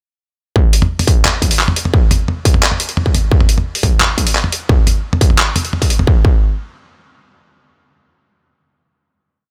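A sparse half-time drum and bass beat drives this short, heavy, cinematic piece: a distorted, up-front electronic kick pairs with a gritty, pitched-down, compressed sampler-style kit of handclaps, hi-hat and low toms through a drop from 0.6 seconds, all set in a digital ambience before a final hit at 6.1 seconds.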